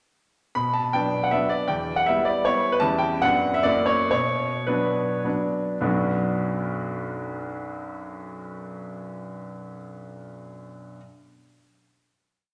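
Heard in a wet recital hall with a lingering reverb, this short, complete romantic classical piece is a wistful, nostalgic triple-time dance for solo grand piano, its brilliant, open tone placed up front with long sustain as a dotted single-line melody rides over bass and chords stressed on the second or third beat, played with rubato and slowing from 2.3 seconds into a final chord at 5.8 seconds.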